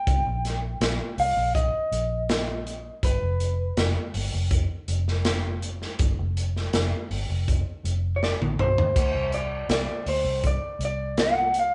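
Straight-eighth soul blues at 81 BPM in 4/4, soulful and laid-back, cut from a longer piece. An electric guitar through a small old amp carries the melody up front with a slightly broken-up, lo-fi tone, over a foam-muted vintage fingered bass that sounds dark and round, and a crunchy, gritty breakbeat kit with dark cymbals, a tight kick and a medium-tuned snare, which plays a fill from 8.2 to 9.0 seconds. The harmony moves from a rootless Cm7 through a chordless stretch to a D7 near the end, and the band plays live in a moderate stone room with a dulled top end.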